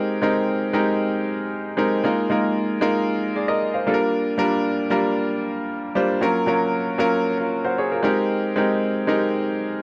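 Disco at 115 BPM in a straight 4/4, this short, glamorous and danceable excerpt features a clear grand piano playing alone from 0.0 to 9.8 seconds, moving through chords from Abmaj9 through Bb7sus4, Gm7 and Gbmaj7 before returning to Abmaj9. The piano sits present and up front, its range spanning Gb3 to F5, with light reverb in a dry, close 1970s-style studio sound.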